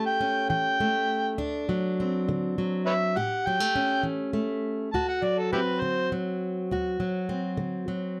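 An overdriven harmonica, gritty and up front with vibrato and tongue slaps, takes a jazz-tinged solo over a fingerpicked plugged-in steel-string acoustic guitar in this rollicking acoustic country blues excerpt in D mixolydian at 68 BPM in 12/8, moving through A7 and D7 with light reverb and close, detailed miking, the harmonica dropping out at 6.1 seconds while the warm guitar carries on to 8.2 seconds.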